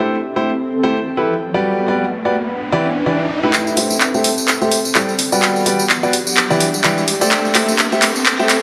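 A bittersweet, energetic piano house passage cut from a longer piece, where a bright, brilliant grand piano riff with tape echo rides over an airy, breathy chorused pad and a background riser, until at 3.5 seconds a filter sweep opens on the piano as an up-front, tape-warm house kit with handclaps, hi-hat and tambourine arrives alongside a quiet tambourine part and a hollow, organ-like FM bass, all in a lush hall reverb.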